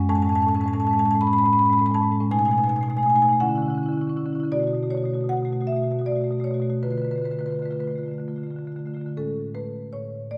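This contemporary classical piece for solo marimba, cut from a longer work, has a playful, flowing mood and a loose, rubato feel in 6/8. The marimba, played with medium mallets, spans a generous range from A2 up to B5, and its rosewood bars give a woody, warm tone that sits up front. The harmony drifts through colorful chords, starting on Amaj7 and moving through B6, Dsus2, B5 and a darker Dm6 before a new section begins at 9.2 seconds back on Amaj7. The recital hall lends a rich, lingering reverb, and the listener seems placed further back in the room, so the notes bloom and blend into the space.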